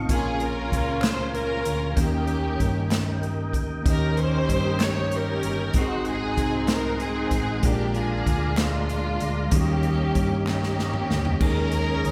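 A slow gospel groove in 6/8 at 64 BPM, counted in dotted quarters, carries this hopeful, uplifting excerpt, with a swinging big-band drum kit (punchy kick, medium-tuned snare, hi-hat, toms and crash) and a round, dark hollow-body electric bass anchoring the pulse, while a very quiet group handclap sits in from 1.0 to 10.8 seconds. Over chords moving from Bbm7 through Eb7, Ab7 and Bb7 to a closing Eb7sus4, a bell-like tine electric piano accompanies and a tonewheel organ holds sustained chords through a slow rotary speaker and chorus vibrato. A rich, up-front string section carries the bowed melody with vibrato and a smooth top, and a drum fill from 10.5 seconds rounds off the phrase in a moderate concert-hall reverb.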